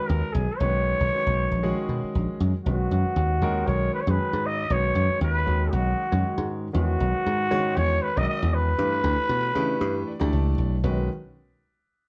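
Bright and soaring, this short excerpt of electric jazz fusion moves at 117 BPM in 4/4 in B major, with a swung 16th-note feel. A growling trumpet carries the solo melody up front, breathy and raspy with a roomy, distant edge, until it stops at 10.3 seconds. Beneath it, a grand piano accompanies with an intimate, natural sound, long sustain and audible action noise, and adds a fill from 9.8 seconds. A dry, foam-muted thumbed slap bass sounds punchy and direct, sitting close in the mix. The harmony moves through Emaj9 and Bmaj9, returns to Emaj9, then passes through Gadd9 before landing on Badd9, and the band plays live together in one room with moderate studio reverb.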